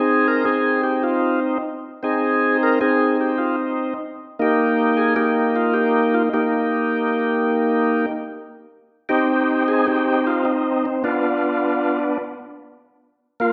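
Swinging at 102 BPM in 4/4, this soulful, smoky jazz excerpt in C minor features a solo percussive tonewheel organ, full and thick with light overdrive, third-harmonic percussion and a slow rotary speaker, moving through Cmadd11, a rootless F9sus4/Bb and Bdim chords within a large, wet studio reverb that places the listener further back in the room.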